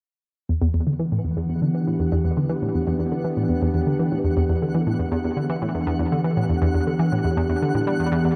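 Bathed in a huge ambient reverb, this expansive, hypnotic cut from longer sequencer-driven space music moves at 120 BPM in E minor. A bright, detuned analog pluck riff with a filter sweep, chorus and tape echo sits up front beside sustained Em7 chords from an evolving, wave-folded, resonant pad coloured by chorus and phaser, while a faint, twinkling granular texture with an octave-up shimmer enters at 1.5 seconds and fades in.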